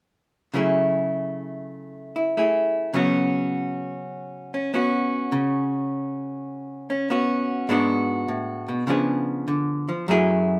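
Solo jazz in F# minor at 101 BPM, moody and cool, swung yet loosely rubato, this brief fragment features a lone archtop guitar, miked and amplified, playing clean, dark and hollow-bodied with a picked, up-front tone from 0.5 to 10.6 seconds over a passage moving from F#m9/C# through C#7sus4 and G#m7b5 to C#7b9, set in moderate studio reverb and tuned slightly below standard pitch at A4 = 436 Hz.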